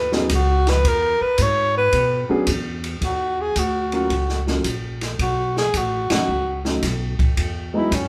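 Small-group swing and bop jazz in Eb minor at 110 BPM, cool and swinging, with a breathy, whispered alto saxophone up front playing the melody as a solo for the first 3.0 seconds over woody pizzicato upright bass, an intimate grand piano with audible action noise, and an open drum kit with dark cymbals and a boomy kick, the band playing live together in a moderate large-studio reverb and hitting an accent at 6.0 seconds in this short cut from a longer piece.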